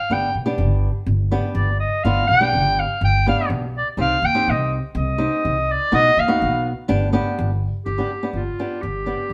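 Captured live in one room with a moderate stone-room reverb, this bittersweet, soulful klezmer piece moves at 124 BPM in a straight 4/4, cut from a longer performance. A bright, vintage-toned clarinet with a soft attack takes a classical-style solo up front from the start until 7.9 seconds, over a dark, fingerpicked flamenco guitar and a woody pizzicato upright bass. The harmony moves from G through C minor and B before settling back on G, shortly before a new section begins at 7.9 seconds.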